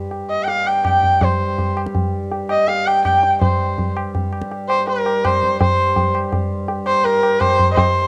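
Longing and introspective, this short excerpt of Hindustani classical music moves at 164 BPM in a straight 3/4, set in raga Malkauns on G with tuning at A4 = 441 Hz. A mellow, reedy pedal harmonium holds a low drone under close, dry, low-tuned tabla with a ringing tone. Up front, a single bowed sarangi sings a clear, focused melody with light vibrato, gliding portamento and sympathetic strings. The harmonium and sarangi carry a cassette-tape character, and the sarangi also has plate reverb, all within a small, homely room sound. The music shifts into a new section at 5.6 seconds.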